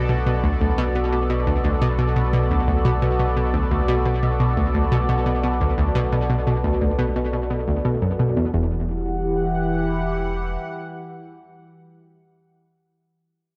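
A dark production bathed in a moderate plate reverb frames this ambient excerpt in E minor, moving at 87 BPM in a straight 4/4 with a mysterious, hypnotic mood. From the start, a sweeping, resonant pad holds sustained chords, its detuned sawtooth tone thickened by a sub octave and chorus as it evolves through a slow-attack filter swell. Up front, an analog pluck repeats a low riff with a round, ring-modulated edge and a filter sweep, and chorus and tape echo trail each fast, short-decaying note until it stops at 8.9 seconds. Beneath them, a deep sine sub bass sustains the bottom of the mix. The harmony rests on Bm7 before shifting to Emadd9 at 8.5 seconds, and the pad lingers alone after the bass drops out at 10.6 seconds.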